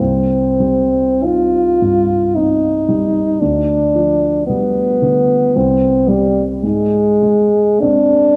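Romantic classical music for French horn and grand piano in a solemn, yearning 3/4 with flexible rubato, as a dark, distant-sounding horn sings the melody with light vibrato over mellow, deep-bassed piano accompaniment of short sustain, both up front in a reverberant recital hall for this brief excerpt.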